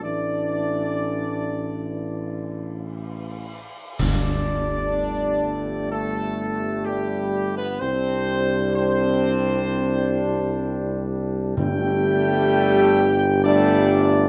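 A solemn, triumphant classical fanfare opens with bright trumpets carrying the melody over mellow French horns, trombones with light vibrato and a mellow, up-front tuba on the bass, while dark cymbal swells, clash cymbals and concert bass drum sound close and dry until 5.9 seconds, hard-mallet timpani strike articulate notes at 4.0 seconds beneath a band accent and again at 11.6 seconds, and suspended chords ring out in light reverb in this excerpt from a longer piece.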